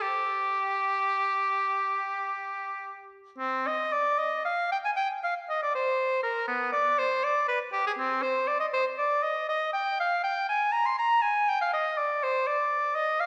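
Flowing in a rubato 12/8 at roughly 63-83 BPM counted in dotted quarters, this grave, introspective classical fragment of a baroque-style fantasia features an unaccompanied oboe that settles into C minor from 3.4 s and spans B3 to C6. The bright, present oboe plays solo with light vibrato and sits up front, while a wet recital-hall reverb lends the space a distant, lingering halo.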